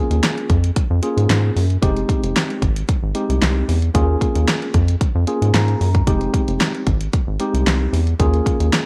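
A dry, close sound opens this short slice of early-eighties boogie funk in F minor, a danceable, slick groove at 113 BPM that moves between Eb9sus4 and Fm9 chords. A rubbery, hollow square-wave bass with a resonant filter pluck sits up front beside a produced electronic pop drum kit with a punchy kick, fat snare and hi-hat. A clean tine electric piano, heard through its built-in speakers, carries the harmony and adds a brief fill at 5.3 seconds.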